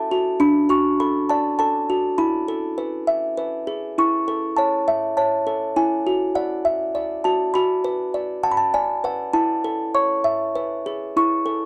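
A dark, warm production with a light touch of reverb frames a lone music box, close-miked and up front, its delicate, tinkling plucked notes sounding full as from a large box. This tender, innocent children's lullaby sways gently in three, moving from a brief opening phrase into a second section at 4.0 seconds that wanders through D, B minor and A chords before settling on an unexpected G-sharp minor colour near the close. It is cut from a longer piece.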